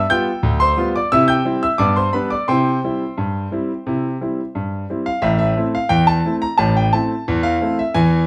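In a straight 2/4 at 88 BPM, this cheerful, playful ragtime fragment, cut from a longer piece, features a solo concert grand piano, brilliant and up front with a deep bass and a smooth, vintage tone, ranging from A1 to G6 and opening on a G7 chord before moving through C and G harmony, then shifting to a new section on A minor at 5.2 seconds, all set in a moderate small-room reverb.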